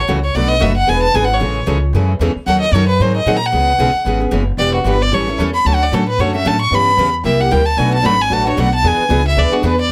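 A swinging, lively slice of acoustic string swing in the gypsy jazz manner, cut from a longer piece and tuned slightly sharp of standard pitch. A clear, bowed violin carries the melody as a solo from the very start, its earthy tone close and up front with a light vibrato. Underneath, a pizzicato upright bass on gut strings gives a woody, thumpy foundation, also sitting up front. Two picked acoustic guitars join at 0.1 s for accompaniment: a bright steel-string with audible finger squeak, and a dark, boxy old ladder-braced guitar tucked into the background. The harmony moves briskly through jazz changes such as Bm7, E7, Amaj7, C#m7 and a C9 before circling back to Bm7 and E7, all set in a light reverb.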